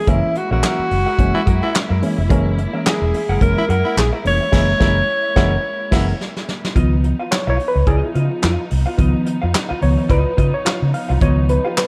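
A breathy alto saxophone with light vibrato leads this playful, strutting funk excerpt at 108 BPM with a swung sixteenth feel, backed by a growling tenor saxophone in the background from 1.3 s, a round foam-muted electric bass, a soft brush kit with punchy kick and handclaps, a clean hollow-body jazz guitar, and a lush, distant string section holding sustained chords. During a band accent and drum fill, the alto drops out at 6.4 s, and the reedy, slightly out-of-tune electric piano, which has been adding stabs through spring reverb and slapback echo, takes a solo from 6.8 s. The production is dark with light reverb overall.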